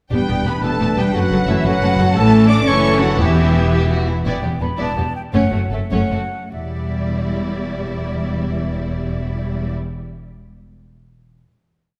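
Adventurous and determined, this complete heroic adventure cue in E dorian moves in a 6/8 lilt at 93-120 BPM, counted in dotted quarters, with a theme that slows from 3.7 s before an outro and a held final chord from 6.5 s. A dark, distant violin section carries the lush, expressive melody with vibrato, doubled in unison by an airy, mellow silver flute, while a soft-attack violin section, a smooth viola section and a warm cello section fill in behind with repeated notes, driving ostinatos and sustained chords. The double bass section sits up front, rich and even, doubling the bass line with sustained notes and passing tones. Through the theme, a clear, vintage-toned clarinet doubles the tune at the octave, a very quiet French horn section does the same, a tight, bright trombone section holds chords, and a roomy trumpet section adds sustained harmony, all stopping at 4.1 s. Round, dry single timpani strokes on bass notes land from 3.2 s under the Em chord, and the whole ensemble sits in a moderate scoring-stage reverb.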